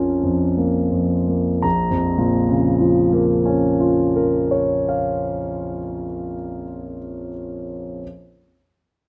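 A concert grand piano sits up front, its deep bass and long sustain giving this short classical excerpt a solemn, elegiac weight. The piano plays an accompaniment from 0.0 to 8.0 seconds, ranging from Bb1 to Bb5 in the key of Bb minor, resting on a Bb minor chord at the start. The pulse is very slow, around 28 beats per minute counted in dotted quarters, in a flexible 6/8 with free rubato. The opening slows down over its first 1.6 seconds before a new passage begins and runs to 5.8 seconds. Light reverb lends the instrument an open, mournful resonance.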